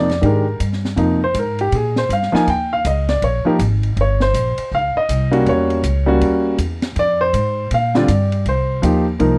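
A swung 4/4 pulse at 160 BPM drives this brief fragment of a jazz piano trio, its eighth notes carrying a lilting, playful bounce with a sophisticated edge. The concert grand piano takes a solo across the whole 9.4 seconds, ranging from C3 to Ab5 with an intimate, natural tone, deep bass, short sustain and audible action noise that places it close to the listener. Beneath it, the pizzicato upright bass sits prominently in the mix between G1 and Bb2, with steel strings and a woody, growly sound. The acoustic drum kit stays further back, with hi-hat, ride cymbal, snare and kick heard in a small room; its dark cymbals, high-tuned snare and boomy kick round out the groove. The harmony moves through chords such as Bb13, Eb13 and Edim7 before settling on Cm7 at 8.5 seconds. Recorded dry and close in a 1970s studio manner with little reverb, the trio sounds immediate and warm.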